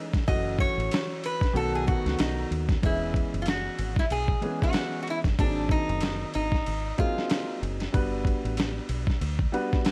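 A bright, nasal metal-body resonator slide guitar opens this cool, smooth jazz-hop excerpt at 94 BPM in E major, taking a steel-bar solo until 2.8 seconds over a woody upright piano with audible action noise and long sustain. A gritty, overdriven sampler-style drum kit with a thumpy kick, hi-hat, snare and ride sits up front in a lightly swung 4/4, joined at 0.3 seconds by a dark, round, foam-muted fingered electric bass. Chords move from F#m7 and B7 to E6, G#9 and Gmaj7, the metallic slide melody ending at 7.6 seconds under vinyl crackle and light reverb.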